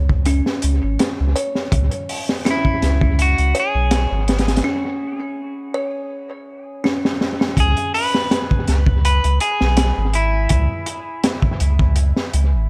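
A round, deep sine sub bass anchors this smoky, hypnotic trip hop fragment, with a crunchy, dark breakbeat kit of tight kick, high-tuned snare and hi-hat whose saturated, rolled-off top carries 12-bit sampler grit and analog delay. A delicate, tinkling music box plays arpeggios until 7.6 seconds, and a clean, twangy picked electric guitar melody enters at 2.5 seconds, both roughened by sampler grit and trailed by dub echo. A break and drum fill lead into a new section at 7.6 seconds, all set in an echo-heavy mix with studio reverb.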